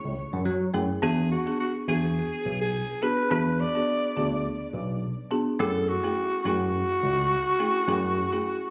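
A raspy alto saxophone with vibrato and a touch of delay carries the sultry, smooth melody in this short afrobeats excerpt at 105 BPM in F# minor, entering at 1.0 seconds over a woody folk marimba and a bell-like tine electric piano holding down the bass, all heard through a small room with club reverb as if caught on a phone.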